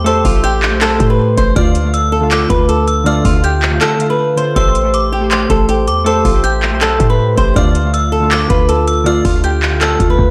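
A half-time trap groove drives this dark, melancholic hip hop excerpt, with a booming analog drum machine up front laying down a deep kick, metallic hi-hats and handclaps; the kick drops out briefly from 3.8 to 4.6 seconds. A bright, fingerpicked flamenco guitar carries the melody with audible finger squeak and delay, over a deep, boomy 808-style bass, glassy wave-folded digital keys with a filter sweep and chorus, and a ringing, inharmonic FM bell with chorus and delay on the second line. The dreamy mix is soaked in plate reverb and dusted with vinyl crackle as the chords shift between Am7 and Dm.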